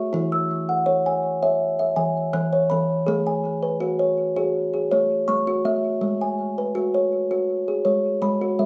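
A solo kalimba, woody and ringing with a hollow-box mellowness and a touch of delay, plays a gentle, meditative world piece in a short section cut from a longer work, sitting up front in a wet studio reverb as its chords move from E to A at 3.1 seconds and on to C#5 at 6.0 seconds.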